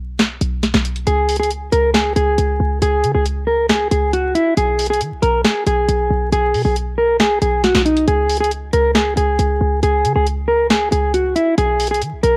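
A half-time trap groove at 137 BPM opens this brooding, menacing hip hop excerpt. A punchy, tight 808-style bass with a fast attack sounds from 0.0 seconds, and sharp snare, bright hi-hats and finger snaps arrive at 0.2 seconds, their electronic kit colored by cassette tape. From 1.1 seconds a dark, clean, fingered electric guitar carries the melody through a low-pass filter over C#5 and B harmony, all set in light reverb with the character of a home cassette recording and vinyl crackle.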